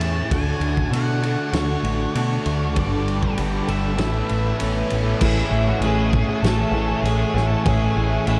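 Shoegaze and dream pop rock with a hazy, wistful mood, cut from a longer piece and drenched in a huge ambient reverb that gives the whole mix a dreamy, blurred glow. A round, up-front dub bass and a loose indie drum kit with a fat snare and dark cymbals anchor a thick fuzz guitar riff in the background, a compressed clean electric guitar riff trailed by reverse reverb, and a very quiet, bright, double-tracked distorted guitar that drops out at 5.2 seconds. An octave-fuzz lead guitar carries the melody through analog delay while a hollow, flute-like pad with slow attack and chorus sustains soft chords.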